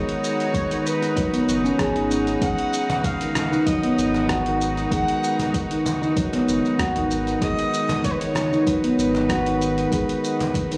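A bright, ringing stainless steel handpan sits up front in this organic downtempo excerpt, playing meditative arpeggios with sharp finger strokes and a trail of tape echo. Above it, a single bowed kamancheh carries the melody with an intimate, close sound, soft attack, light vibrato and portamento, also touched by tape echo. Beneath them, a chamber string ensemble holds rich, smooth-topped chords with sidechain pumping, and a round sine sub bass sustains the low end. From 0.5 s a deep electronic kick joins a gritty, compressed sampler-style kit of hi-hat, rim click and shaker, and a woody, distant cajon with faint snares and hard hands enters at 2.9 s. The music rests on G#m7 in G# minor at 96 BPM with a light 16th-note swing, and the dry hardware recording, with only light reverb and small room ambience, gives it an earthy, warm mood.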